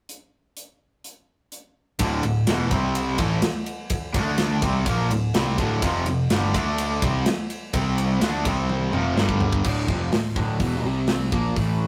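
A tight metal drum kit opens this driving, aggressive hard rock excerpt alone, sitting up front with bright cymbals, a medium-tuned snare and a tight kick. At 2.0 seconds three overdriven guitars crash in together on a heavy riff over chords built around D5, C5 and F5: a cranked stack guitar colored by phaser, a double-tracked distorted electric guitar, and a hollow-body semi-hollow guitar pulsing with harmonic tremolo, with the stack and semi-hollow guitars tucked further back in the mix. A growly, amped picked electric bass enters alongside them, anchoring the low end. A drum fill at 8.7 seconds leads into a closing passage that moves through Dm, C5 and Bb5, where the doubled distorted guitar drops out and the remaining parts push on to the cut. The whole thing has the rough, tube-saturated feel of a rehearsal-room take in a small, moderately reverberant space.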